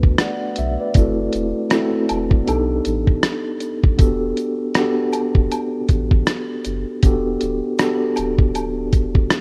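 A rough, cassette-worn home demo with lossy grit and light reverb carries this nostalgic, reflective lo-fi hip hop fragment at 79 BPM in E minor, where a mellow, clean tine electric piano sits up front through a low-pass filter over Bm7, F#m7b5, B7alt and Em11, a deep, round dub sub bass holds sustained tones beneath, a compressed, gritty sampler-style soul kit thumps with hi-hat, kick and rim click, and a tube shaker, woodblock and group handclap enter at 0.2 seconds from the background of a small room.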